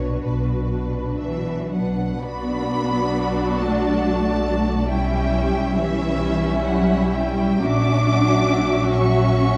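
Classical slow romantic movement for string orchestra, elegiac and solemn, in B minor and 3/4 at a rubato 56-70 BPM, where a smooth, vibrato-rich violin melody sits over a second violin line, expressive violas sliding with portamento, lush bowed cellos and dark, woody double basses sitting up front, all moving through Bm, C#m7b5/B and F#7/A# in a moderate scoring-stage reverb with a warm, dark production across this 9.6-second fragment of a longer work.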